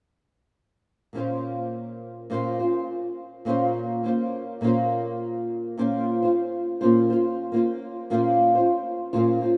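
Wistful and tender, this short pop excerpt cut from a longer piece moves at 103 BPM in 4/4 with a light sixteenth-note swing, set in Bb minor. A fingerpicked flamenco guitar carries the accompaniment from 1.1 to 9.6 seconds, spanning Bb2 to C5 with a dark acoustic tone placed up front. Double-tracking thickens the guitar, and it opens on a Bbmadd9 chord that colors the passage with gentle yearning. A lush, wet hall reverb with a long tail surrounds the playing, giving the intimate part a spacious glow. The rough home-demo mix sounds dulled at the top, lending the recording a hazy, unpolished character as it shifts into a new section at 5.8 seconds.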